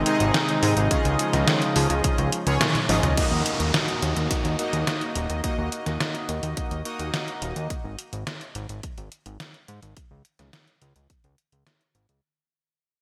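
This synthwave piece, cut from a longer track, moves at a driving 106 BPM in a straight 4/4 and holds a nocturnal mood in Eb dorian. A smooth, detuned sawtooth pad sits in the background with slow-attack chords, treated with chorus and sidechain pumping. Bold, brassy synth stabs ride up front with chorus and digital delay, and a very quiet, round pluck traces bright arpeggios with a filter sweep and ring-modulated edge. Underneath, a fat, saturated bass with a snappy filter pluck anchors the low end, joined by a tape-warm, sampler-style 8-bit drum machine with gated reverb on its snare, toms, hi-hat and crash, plus a punchy, layered electronic kick. A band accent at 2.6 seconds launches a drum fill that closes the opening at 3.2 seconds, when the music turns to Ebm, the pad drops away, a background downlifter sweeps in until 7.7 seconds alongside the brass, and the whole passage fades out inside a lush hall reverb and glossy 1980s-style digital sheen.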